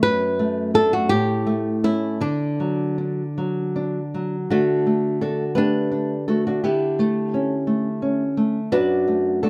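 A 6/8 metre at a slow 52-59 BPM, counted in dotted quarters, moves with a free rubato feel in this tender, romantic guitar duo in D major, tuned slightly low to A4 = 439 Hz. A fingerpicked flamenco guitar carries the melody between A3 and B4, its warm, flamenco-tinged voice placed up front and touched with plate reverb. Beneath it, a small-sounding fingerpicked nylon-string guitar supplies the accompaniment from F#2 up to B4, sitting close and slightly louder than the melody. The harmony opens on D/F#, passes through A7 to D, then shifts at 4.5 seconds into a second passage that leans on A7/D before settling back on D/F# at 8.7 seconds. A moderate studio room gives both instruments a gentle, intimate space across this short fragment cut from a longer piece.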